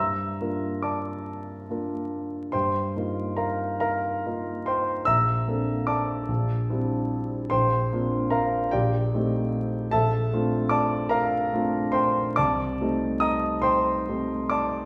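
A concert grand piano with a deep bass and natural tone carries this mysterious, hazy fragment of an impressionist classical solo piece, spanning Bb1 to E6 in 6/8 with uneven, rubato beats. Rich extended harmonies drift from Gm7 through Bbmaj9, C9/Bb and Cm6/Bb before settling on Cm6 at 12.4 seconds. The instrument sounds as if heard from further back in a reverberant recital hall, with vinyl crackle adding to the dreamy atmosphere.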